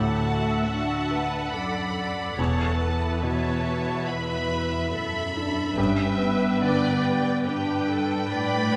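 A felt-muted upright piano with audible action noise opens this sorrowful, bittersweet cinematic film score at a rubato 71 BPM in 4/4, joined from the start by lush, softly attacked violins on a high second line, focused violas, close cellos carrying the bass, and a mellow French horn section holding sustained chords. A distant double bass section sits in the background from 2.4 to 6.6 s as the harmony moves from D to Esus4 and settles on G at 5.8 s. The whole short excerpt is bathed in the wet reverb of a recital hall.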